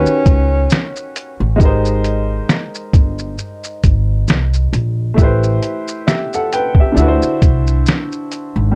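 A dark, cosy production with light reverb gives this short lo-fi hip hop excerpt a dreamy, warm glow at a relaxed 67 BPM in 4/4, with a gentle 16th-note swing. A mellow tenor saxophone opens with a brief solo phrase, its subtone breath, vibrato and scooped notes softened by a low-pass filter and trailed by analog delay, and it falls away by 0.9 seconds. An upright piano carries the accompaniment throughout, woody, smooth and vintage, with short sustain, its tone dulled by cassette tape and a low-pass filter as it moves through Eb7alt, Abmaj9, Am9 and D9. Beneath it, a pizzicato upright bass with steel strings sounds dark and acoustic, sitting up front in the low register. The sampler-style drum kit arrives at 0.1 seconds, compressed, pitched down and muffled, pairing a thumpy kick and fat snare with hi-hat, shaker and finger snaps that keep the swung groove relaxed.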